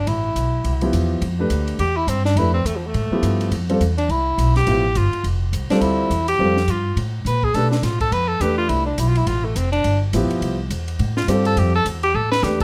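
A breathy tenor saxophone with a smooth top and vibrato solos up front through this brief fragment of open, spiritual modal jazz in F lydian, swinging in 4/4 at 209 BPM. A woody, thumpy pizzicato upright bass sits equally forward, a compact cocktail drum kit with dark cymbals, a high-tuned snare and a punchy kick sits dry behind them, and a dark, mellow grand piano with audible action noise joins at 0.8 seconds. The harmony moves from Fmaj9#11 to a rootless Dmadd9 and back under light reverb, and a drum fill arrives at 12.1 seconds.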